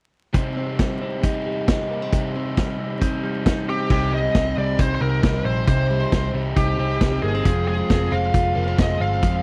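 A straight, steady 4/4 pulse drives this short cut from a longer jangly indie pop piece, restless and bittersweet in mood. The vintage drum kit sits up front with a tight kick, medium-tuned snare, hi-hat, crash and dark cymbals, its rolled-off top giving a mid-forward studio-room character. From the opening, a biting overdriven guitar plays accompaniment while a clean, compressed electric guitar recorded direct picks arpeggios coloured by phaser and slapback echo. At 3.7 seconds a high-gain lead guitar takes the melody, distorted and up front with its own slapback echo, and at 3.9 seconds a foam-muted, round, amped bass joins. The harmony moves from C minor to F minor, and the dry, close 1970s-style recording carries a layer of vinyl crackle.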